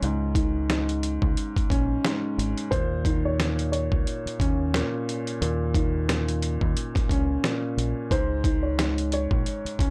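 A compressed, sampler-style soul drum kit sits up front in this gritty boom-bap hip-hop excerpt, its thumpy kick and medium-tuned snare riding a lightly swung 16th-note hi-hat feel at 89 BPM in 4/4. Beneath it, a deep, round, punchy fingered electric bass, tube-saturated and played direct and amped, holds down the low end. A woody, vintage upright piano, also placed up front, provides the accompaniment, its tone filtered and softened by cassette-tape colouring. At 2.7 seconds a second upright piano enters with a small, mellow melody. It is slightly detuned and intimate, with audible action noise. The harmony moves from Dbsus2 to Eb5 and back to Dbsus2, and the dry, hardware-style recording carries only light reverb, giving the piece a dusty, shadowy mood.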